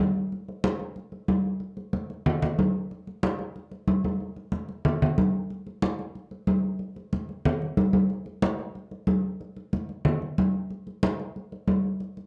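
A straight 4/4 pulse at 185 BPM drives this short, danceable Latin fragment, cut from a longer piece and carried entirely by congas. The drums come in at 0.3 s and play through to the end at 12.3 s, sitting up front with a ringing, medium-tuned acoustic tone struck with soft hands in a live room. The mood is sunny, and the arrangement shifts into a new section at 9.4 s. A wet studio reverb with a short tail surrounds the playing. Over the whole recording lies the worn, warbling character of old cassette tape, with drifting pitch and a dulled top end that gives it a faded cast.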